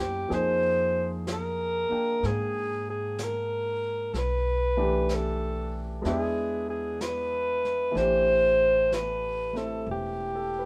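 Jazz ballad at a slow 63 BPM with a late-night, romantic swing, this fragment features an up-front alto saxophone carrying the melody with a warm, vintage subtone and scooped notes, supported by clear, open baby grand piano chords moving from Fm11 through E7 to Am7, a woody, thumpy pizzicato upright bass on gut strings, and a small-room brush kit of high-tuned snare and hi-hat that enters at 0.3 s, all set in light reverb.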